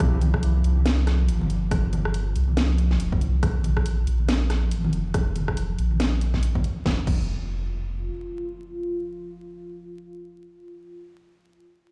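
A big, bare-room sound with a large studio reverb and a hiss of vinyl crackle frames this short cut from a longer deep dubstep track, meditative and dark at 140 BPM in a swung, half-time 4/4. A moody, warbling pad of detuned sawtooth and sine voices with a sub octave holds sustained chords through chorus and its own reverb, moving from C5 to Bb5 before the harmony falls away. A round, mellow sub bass sits up front, while an overdriven, punchy electronic kick and a tape-warm garage kit of cracking snare, rim click, hi-hat and crash cymbal carry the groove. Low-tuned, thick-skinned congas played with soft hands drift in the background through dub echo. A distant electronic impact arrives at 7.0 seconds, the drums stop at 7.2 seconds and the bass at 8.1 seconds, leaving the pad and the impact to carry the close.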